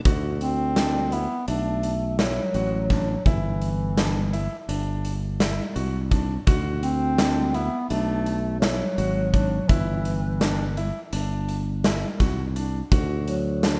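This rough home demo mix, touched with light studio reverb, is cut from a longer piece of progressive instrumental band music in 9/8, with a straight, driving feel and a bright mood. A big acoustic rock kit sits up front in a stone room, its punchy kick, medium-tuned snare and hi-hat carrying the uneven meter from the opening. A growly, direct fingered electric bass holds the low end, while a grand piano plays arpeggios through tape echo, its tone brilliant and polished, with audible action noise and long sustain. From 0.4 seconds a bass clarinet takes the solo melody in a jazz style, its soft attack, vibrato and scooped notes sounding distant and roomy. The harmony cycles twice through D7, Bm7 and G5 before settling on D at 12.9 seconds.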